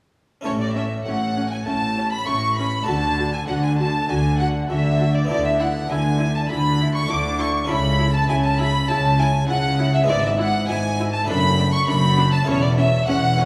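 Over a straight 4/4 pulse, this brilliant, festive baroque-style concerto movement, cut from a longer piece, sets a focused solo violin atop two rich chamber violin sections carrying the melody and a second line in the background, with a clear viola section filling in, a portamento-tinged cello section and an intense, lush, up-front double bass section anchoring the bass, and a round Flemish-style harpsichord plucking its accompaniment in the background, heard inside a wet concert-hall reverb.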